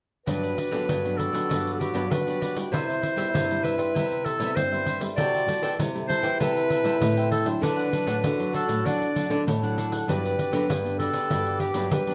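Samba and choro in a straight 4/4, this short excerpt from a longer piece has a playful, festive mood, with every part playing together from 0.3 seconds to 12.1 seconds. A clear clarinet with a smooth top carries the melody up front in a classical style, while a breathy, mellow trombone with light vibrato and a soft attack adds a close-miked second line in a jazz manner. Beneath them, a crisp, picked cavaquinho and a small, fingerpicked nylon-string guitar fill out the accompaniment. A second nylon-string guitar, woody and full-bodied with old strings, is fingerpicked in a classical style to supply the bass. A jingly pandeiro played with hard hands sits close in the mix, and the ensemble moves through Gmaj7, Cmaj7, Am7/C and D before returning to Gmaj7, all in a moderate large-studio reverb.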